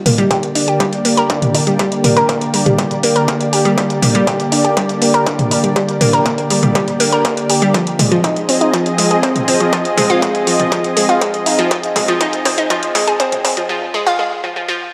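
A straight 4/4 pulse at 121 BPM drives this driving, dramatic melodic techno excerpt in G phrygian, which builds over a Gm chord before shifting to Fm7 at 7.7 seconds. A punchy analog drum machine sits up front with hi-hat and toms, re-recorded in a large room, while a layered electronic kick, distorted, overdriven and high-pass filtered, stays in the background. An analog pluck plays arpeggios with a round, detuned tone that blends sawtooth and square waves over a noise layer, shaped by a filter sweep, a moving notch, chorus, tape echo and sidechain pumping. Alongside it, a lush unison pad holds thick, slow-attack chords with a long release, also chorused and pumping. A moderate hall reverb with digital ambience surrounds the mix, and after a drum fill the drum machine and pad stop at 13.7 seconds, leaving the pluck alone for a brief break.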